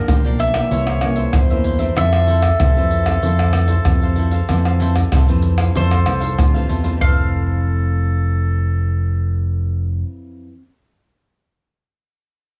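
A bowl-back mandolin carries the melody with doubled, picked strings and a slapback echo, while a clear, soft-attack clarinet in a vintage classical style plays a second line beneath it in this sunny, joyful samba and choro fragment at 95 BPM in F major. A punchy, up-front fingered electric bass anchors the Gm7, C7b9 and Fmaj7 changes, supported by a full-bodied fingerpicked nylon-string guitar set back in the mix and a crisp cavaquinho. Egg shaker, tight surdo, pandeiro and tamborim, played with soft hands in a live room, sit up front until they stop at 7.2 s, and the whole piece has light reverb.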